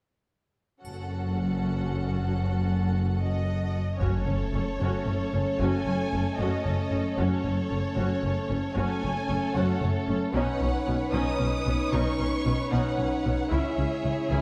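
A dark, warm scoring-stage sound with moderate reverb frames this brief cut from a longer epic, dramatic film cue in 6/8. Bowed strings open together. A lush violin section carries a supporting line, violas add expressive portamento, a rich, close cello section plays the bass, and an up-front double bass section grounds the low end, all with vibrato. A bright triangle sounds faintly in the background at the start. At 3.2 seconds a second violin section takes the melody high above, smooth and even. At 4.0 seconds a huge, dark impact hits as a close-miked French horn section enters with sustained chords and light vibrato, giving the full symphonic texture added weight and drama.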